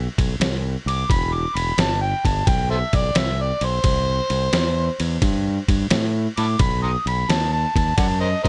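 Blues rock in a power-trio mould with a southern rock streak, this gritty, brooding excerpt moves at 87 BPM in 4/4 with a swung eighth-note feel, sitting in E minor over an Em, C and B progression. A growling fingered electric bass opens at the very start, bright and punchy with overdrive on its amped tone, holding the low end up front. Just after, a sampler-style drum kit arrives at 0.2 seconds, compressed and pitched down, with a thumpy kick, a medium-tuned snare and ride cymbal giving it a trip hop grain. At 0.9 seconds an amplified, overdriven harmonica takes the solo in a jazz style, its sound carrying vibrato, scooped notes, tongue slaps and a soft attack, with analog delay trailing behind it. The mix is dry and close, with little reverb and a dark top end that keeps all three parts up front and raw.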